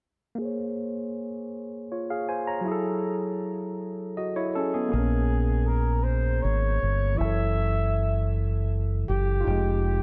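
A barky tine electric piano, lightly overdriven through a combo amp and placed up front, opens this slow six-eight R&B passage at 0.4 seconds with a filter sweep over minor ninth chords, Bbm9 moving to Gbm9. The mood is yearning and late-night, moving at 53 BPM in a straight feel, tuned slightly sharp to A4 = 441 Hz. A breathy flugelhorn takes the solo melody from 4.6 seconds, mellow and whispered with a soft attack and light vibrato, sitting distant and roomy in a diffuse ambient delay with an intimate, jazz-style voice. At 4.9 seconds a deep dub fingered electric bass arrives, dark, round and direct, standing up front as the chords settle into Bbm7 and Gbm7 before reaching Fm9. Light reverb and studio ambience frame this fragment of a longer piece.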